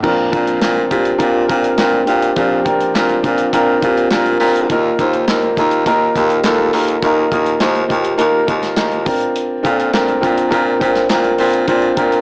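A woody upright piano with audible action noise and long sustain, a bright baritone saxophone with vibrato carrying the bass line, and a studio drum kit with punchy kick, snare, hi-hat, handclaps and crash all begin together in this uplifting piano-driven pop excerpt in Bb major at 103 BPM, with the piano adding a brief fill at 3.8 seconds as the chords move from Bbadd9 to Ebsus2, all heard through a blown-out, overdriven small-speaker sound with moderate reverb.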